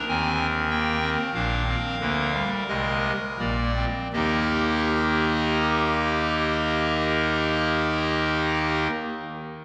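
A pipe organ's hollow, up-front clarinet reed stop with baroque voicing and a touch of chiff plays solo in this joyful, stately fragment of a baroque-style four-part fugue in Eb major, moving at a slow 39-50 BPM in straight 4/4, easing through a Bb7 chord over the first 4.1 seconds before settling onto Eb and ringing until 8.9 seconds inside a wet church reverb.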